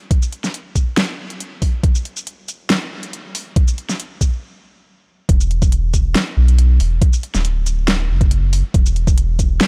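This deep dubstep excerpt moves at 139 BPM in a half-time 4/4 feel, its mood cavernous and brooding, and it is tuned slightly low to A4 = 438 Hz. A soft dub sub bass sits up front throughout, deep and round, with a triangle and square wave character, a fast attack and sustained notes in the D1 to B1 range, thickened by tube saturation and trimmed by a high-pass filter. An electronic kick drum delivers a knocking, overdriven, layered thump, while a dubstep drum kit of hi-hat, shaker and a huge snare adds its own overdriven, produced edge, both placed up front. The opening build-up halts in a stop at 4.4 seconds before the drop lands at 5.3 seconds. The whole recording carries a dry, gritty hardware sound with a cassette-tape quality, set in a digital ambience.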